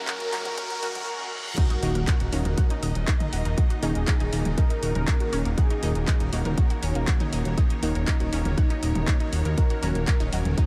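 Dark and dramatic, this melodic techno passage in Eb phrygian, cut from a longer piece, runs at 120 BPM in a straight 4/4 and is soaked in a huge, dreamy ambient reverb. A short build-up opens on an E/Eb chord, with a background riser and reverse cymbal, and a barely audible warbling, vintage analog drone that sounds only from 0.2 to 1.1 seconds. At 1.6 seconds the drop arrives on Ebm7 and the background impact hits; shortly after, at 1.8 seconds, a fat, thick, detuned sawtooth bass enters up front with sidechain pumping and a filter sweep. A punchy, tape-warm electronic kick drives from the front of the mix, joined by a layered house kit of crash cymbal, handclaps, hi-hat and toms, both re-recorded in a small room. Above them a bold, detuned unison lead carries the melody with vibrato, pumping and delay, while a lush unison pluck spins arpeggios through phaser and diffuse ambient delay in the background. 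A distant, smooth symphonic string section, a very quiet evolving wavetable pad and faint brassy, bright synth stabs fill out the texture.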